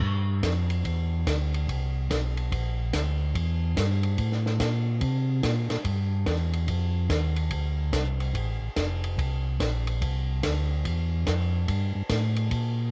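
Bluesy and greasy, this soul jazz organ trio fragment swings at 144 BPM in C mixolydian, with a mellow, round tonewheel organ carrying the bass line from F1 to C3 through light overdrive, chorus vibrato and a slow rotary speaker, beside a dry, compact cocktail drum kit of hi-hat, punchy kick, dark ride cymbal and high-tuned snare that carries a cassette tape grit, all set in light reverb with a home-recorded cassette feel.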